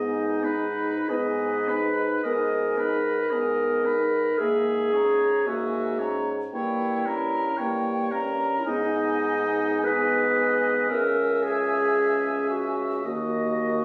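Solemn and elegiac, this slow romantic wind quintet movement in G# minor moves with a rubato 4/4 pulse around 45-58 BPM, its harmony passing through a diminished colour and on through C# minor before closing on a bare D# fifth. A pure, hollow silver flute carries the melody with vibrato and tongued notes, joined by a clear, close-miked oboe on the second line, while a dark, smooth-topped French horn and an up-front clarinet sound the accompaniment over a soft-attacked bassoon bass. The ensemble sits in a wet stone room captured on a phone with added studio reverb and compression, and the 13.8-second passage is cut from a longer piece.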